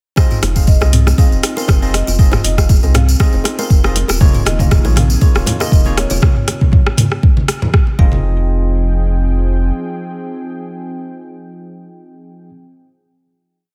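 A four-on-the-floor electronic kick drives this spiritual, earthy afro house piece alongside a programmed drum kit with metallic hats, rim clicks and low toms, very quiet bongos, bright hand-played tambourine sixteenths, a ringing kalimba step sequence, a deep, round sub bass in a dotted rhythm, and barky, lightly overdriven electric piano stabs with tape echo. Thick, low-tuned congas and a smooth, warbling analog pad arrive at 4.2 s, and the kick and kit fall away near 8 s, while a woody marimba with medium mallets plays call phrases in the background through the final hit to 12.5 s.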